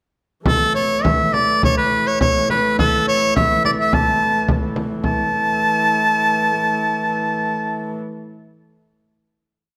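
A wet recital hall reverb surrounds this complete, rustic and festive medieval dance in A major, tuned to A4 = 436 Hz, in a straight 2/4 that speeds up from 102 to 116 BPM. An edgy, up-front solo shawm plays an ornamented modal folk melody with light vibrato over a smooth, close hurdy-gurdy drone, while a deep frame drum struck with hard hands keeps an evenly spread pattern. The final chord arrives at 5.0 s, the drum stops at 5.3 s, and the shawm ends at 7.9 s as the drone sustains.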